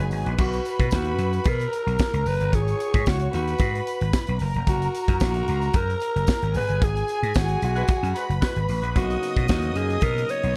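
A growling alto saxophone leads this glamorous, driving disco excerpt, its breathy, raspy tone close-miked and up front as it carries the melody from 0.4 seconds onward. Beneath it, a punchy, amped slap bass and an acoustic drum kit with a high-tuned snare, crash, hi-hat and a punchy kick push a straight feel, while a jingly tambourine sits in the background. A clear, biting string section plays a second line, bowed with light vibrato. The band hits accents at the very start and again from 6.8 to 9.0 seconds, where a mellow, distant horn section adds stabs touched with tape echo. A fat tonewheel organ, lightly overdriven with chorus vibrato and a slow rotary speaker, returns with sustained chords at 9.0 seconds. The harmony moves through Bmaj7, G#m7 and F# before settling on Bmaj9, all wrapped in a dark studio reverb.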